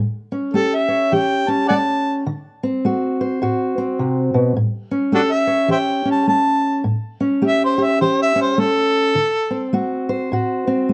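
A loping swing feel at 104 BPM in 4/4 drives this short cut from a longer acoustic country blues, rollicking and swaggering in A mixolydian. A fingerpicked steel-string acoustic guitar carries the accompaniment up front from the start, its woody, old-string tone sitting dark and concert-like beneath the tune. At 0.5 seconds a mellow harmonica takes the melody as a jazz-styled solo, also up front, with light vibrato, tongue slaps, scooped notes and a soft attack, its smooth top lifted by plate reverb. The harmony moves between A7 and D7, and the harmonica drops out at 9.7 seconds while the guitar plays on to the end. The production is dusky and mellow-rounded, with moderate studio reverb lending the duo a warm glow.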